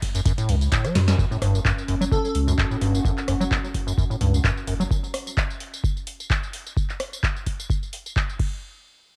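Trippy, gritty acid house cut from a longer piece, opening on a drop in which a deep, up-front electronic kick and a booming analog drum machine of tonal snare, metallic hi-hats, handclaps, rim clicks, tambourine, ride and crash run under cassette-tape grit, with a drum fill at 1.0 seconds. A saturated, thick sub bass and a squelchy, resonant square-wave acid bass riff with overdrive and tape echo pump against the kick. A warbling, nostalgic lo-fi pad with chorus and reverb drifts in at 1.6 seconds, and a soft, airy lead with vibrato and analog delay touches a single note at 2.1 seconds.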